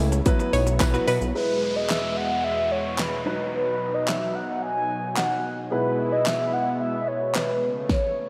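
A straight, punchy groove from a layered electronic pop kit, with handclaps, shaker, hi-hat, kick and fat snare, drives this carefree, upbeat dance-pop snippet, which opens on a drop where a thick detuned analog bass, a clean direct-recorded guitar riff, a faint jingly tambourine and a round, chorused analog pluck all flash by within the first second or so. Underneath, a lush unison pad holds sustained chords while a warm, long-sustaining baby grand piano plays accompaniment in the background, both pumping with sidechain. At 1.4 s a mellow, horn-like synth lead takes the melody up front with vibrato, chorus, slapback echo and delay, while an electronic downlifter sounds beneath it, all bathed in a big hall reverb that gives an arena-sized sound.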